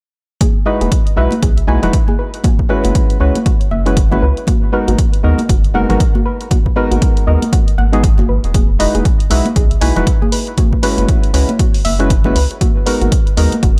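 A swung sixteenth-note groove in 4/4 drives this deep house excerpt, anchored by a punchy, dry electronic kick drum sitting up front, with a dry electronic hi-hat and bright, high-tuned congas with a damped, thin-skinned sound tucked in the background. The mood is deep and late-night, carried by a dark, warm production with light reverb. A round analog bass enters at 0.8 seconds, its sustained, deep tone pumping against the kick. Above it, a hollow, organ-like percussive stab with a wave-folded edge punches out stabs through chorus and delay, while a soft, gentle pluck spins arpeggios through chorus and dub echo, both also pumping with the kick. The harmony cycles through Emaj7, F#9sus4 and G#m7, giving the loop a smooth, hypnotic pull until it breaks off at 13.8 seconds.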